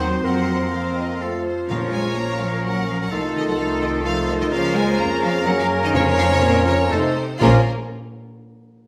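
An intense, vibrato-laden violin section carries the melody through this restless, urgent fragment of a quick classical-period symphonic movement in triple time. Around it, a pure, crisp flute group, a present clarinet, a clear oboe and a soft, sul tasto second violin section weave supporting lines, while a distant bassoon, a lush but very quiet viola section and a mellow, roomy French horn section fill in the harmony. Focused cello and double bass sections anchor the bass, round soft-mallet timpani enter at 1.7 and again at 5.9 seconds, and the whole orchestra sits in a stone room reverb.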